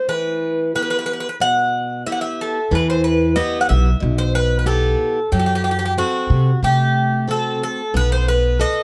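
A bright, metallic Greek bouzouki opens this short Greek folk passage, its doubled strings, some in octaves, carrying a cool, bittersweet melody up front over a boxy, picked, swing-style acoustic guitar with fresh strings. At 2.7 seconds a woody, thumpy upright bass with gut strings joins, plucked and placed close, as the harmony moves from E minor through F# diminished to a closing B7. The sound is dry and detailed, with the instruments caught by close microphones.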